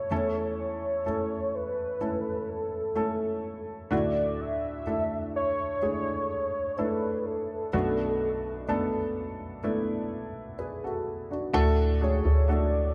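A dreamy mix soaked in wet plate reverb frames this tender, emotional pop ballad fragment in straight 4/4. An intimate baby grand piano, up front with audible action noise, short sustain and a touch of analog chorus, carries the accompaniment through A/E, Dadd9 and Bm7. Above it, a velvety, detuned sawtooth synth lead sings the melody with vibrato, chorus and tape echo, and at 11.5 seconds, as the harmony moves to D, a hollow, bouncy FM bass arrives with a punchy, knocking attack.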